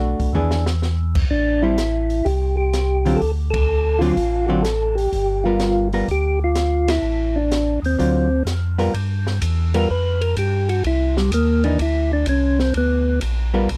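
A percussive tonewheel organ carries the melody, its mellow, round tone clicking with third-harmonic percussion through a slow rotary speaker, entering at 1.3 seconds, and an organ solo takes over from 8.9 seconds onward. This is a greasy, bluesy soul jazz organ trio in G mixolydian, swinging in 4/4 at 126 BPM, with a second tonewheel organ covering the bass line in a piping, scooped voice that also turns slowly through its rotary speaker. A dark, clean hollow-body electric guitar supplies picked accompaniment, sitting up front alongside both organs. The open acoustic drum kit, set further back, pairs dark cymbals with a high-tuned snare and a boomy kick, opening with a short fill at 0.3 seconds before the band hits accents together. Dominant chords with a sharp-nine bite drive the harmony, and the dry, close small-room sound gives this excerpt a 1970s studio feel.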